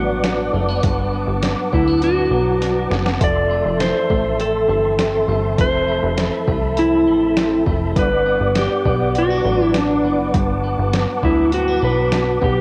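A floating, blissful dream pop passage in G major at 101 BPM opens on a clean, fingered lap steel melody with slide and volume swells through analog delay, over soft, flute-like tonewheel organ chords with key click, chorus vibrato and a fast rotary speaker, twangy chorused electric guitar arpeggios, and a punchy, funky sawtooth bass with a filter pluck. At 0.2 seconds a muffled, pitched-down sampler-style kit joins with a thumpy kick, medium-tuned snare and hi-hat, all colored by overdrive and cassette tape, and it plays a fill from 2.6 seconds. The chords move from Gmaj7 to Fmaj7 and back, bathed in a lush hall reverb with a homemade cassette character.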